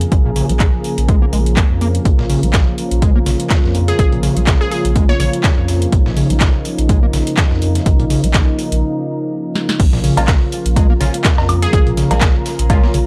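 Driving and trippy, this acid house excerpt runs at 124 BPM in Bb minor with a swung sixteenth-note feel, holding on a Bb minor chord throughout. A punchy, up-front electronic kick and a booming analog drum machine with crisp snare, metallic hats, handclaps, cowbell, woodblock and crash carry the groove, joined at 2.1 seconds by a dusty, overdriven sampler-style kit of hi-hat and snare sitting in the background. Underneath, a round sine sub bass pumps against the kick while a squelchy, resonant square-wave acid bass, treated with chorus and delay, undergoes a filter sweep through the opening 9.8 seconds. A smooth, detuned sawtooth pad with chorus and tremolo sustains the harmony, and an ethereal, airy pad with built-in reverb fades in above it. A glassy wavetable pluck flickers in briefly with tape echo, and after a short break and a drum fill the drop lands at 9.8 seconds, bringing nasal, band-passed chord stabs with phaser and delay. 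The sound is dry and gritty, with transformer saturation giving it a hardware edge.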